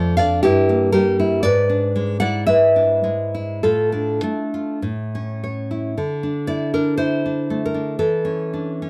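Romantic solo classical guitar in D minor, wistful and melancholic, moving at a slow 49-61 BPM in 2/4 with a freely rubato feel. A single fingerpicked nylon-string guitar carries the whole piece, its bright, deep classical tone sitting up front and spanning from F2 to F#5. The harmony drifts through diminished and dominant colors, settling on Dm/A at 3.6 seconds before a new section opens at 6.0 seconds on a bare D5 and closes on A/E. The sound is dry and close, a 1970s-style studio recording with little reverb, so every note of the acoustic instrument comes through plainly. This short passage is cut from a longer piece and stops at 8.9 seconds.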